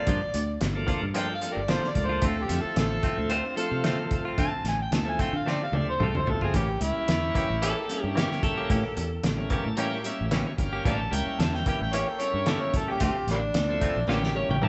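Soul blues in D minor at 111 BPM with a straight-eighth, mournful feel, this excerpt sets a gritty, overdriven harmonica with scooped notes and tongue slaps up front over a shouting tonewheel organ with key click and slow rotary speaker, twangy clean guitar stabs, a round fingered bass and a muffled, cloth-damped drum kit with a fat snare, while a very quiet horn section holds sustained chords from 2.2 seconds, a slightly broken-up second guitar with spring reverb appears in brief spots, and the band plays live in a large studio room over chords moving from Gm7 through Dm7 to A7b9.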